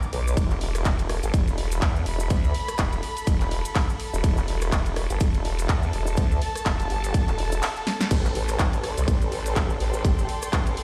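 A swung sixteenth-note groove drives this gritty, bouncy bass house clip, cut from a longer piece, with an overdriven, punchy electronic kick sitting up front from 0.4 seconds. A layered house kit fills out the beat with a punchy snare, handclaps, rim clicks, bright hi-hats, ride and crash cymbals, and a drum fill lands at 7.9 seconds. The centrepiece is a nasal, resonant wobble bass that sweeps through vowel-like formant shapes; it is saturated, compressed, thickened with chorus and pumped by sidechain compression. Behind it, a dark, woody string section bowed with light vibrato and a soft attack provides a pumping texture, and a grainy cabasa sits quietly in the background. The harmony sits on an E5 chord before moving to A minor at 8.1 seconds, and the whole mix sounds as if played on a big sound system in a bare room with stone reverb.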